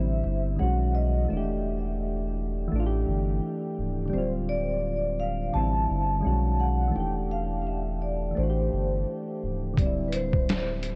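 Wrapped in light reverb and cassette-tape grit, this nostalgic, melancholic lo-fi hip hop fragment in A minor at 85 BPM with a 16th-note swing sets a ringing, metallic soft-mallet vibraphone melody, with medium motor vibrato, low-pass filtering and diffuse ambient delay, over chorused, tape-softened electric-piano-like synth keys and a deep, round dub sub bass, until a compressed, pitched-down sampler-style drum kit with a muffled, thumpy kick and a medium-tuned snare enters up front at 9.8 seconds.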